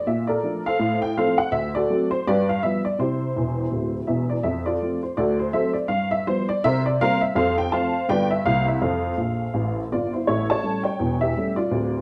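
A swinging 4/4 pulse at 165 BPM drives this exuberant stride-piano fragment in F major, cut from a longer piece. A lone honky-tonk upright piano carries everything, its detuned, jangly tone giving the playing a vintage, saloon-like character across a range from D1 to A5. The harmony cycles through turnaround-style changes such as Bbmaj7, D7, G7 and C before settling on F, then shifts to A7 as a new section begins at 10.3 seconds. Short piano fills arrive at 3.3 and 9.2 seconds, adding bursts of flourish between the chord movements. A wet club reverb surrounds the instrument, and the listener seems to hear it from further back in the room, as if seated among the tables.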